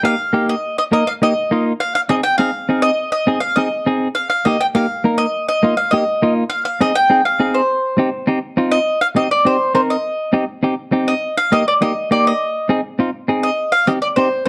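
A dark, lightly reverberant production frames this danceable, driving Latin excerpt in C minor at 204 BPM, where a mellow, woody mandolin with doubled strings carries the up-front melody between C5 and G5 while a clean, compressed electric guitar picks the accompaniment through chords such as Ebadd9, Ab6 and Cm, both parts playing from the start until about 14 seconds.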